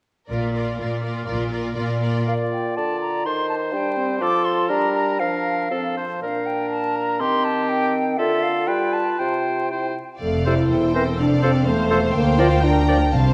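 Lively and spirited, this quick classical-period orchestral movement in 2/4 moves with a flexible rubato feel, opening on strings: a clear violin section carries the melody over a rich second violin line, focused, lush viola accompaniment, distant cellos and intense double basses. At 2.3 seconds the woodwinds take over, with a present oboe, a smooth-topped clarinet and a pure, metallic flute on second lines above a mellow, punchy bassoon, before the strings return at 10.2 seconds joined by a dark, roomy French horn section holding sustained chords. Very quiet timpani touch in at 13.1 seconds, and the recording sits in a wet scoring-stage reverb with vinyl crackle beneath.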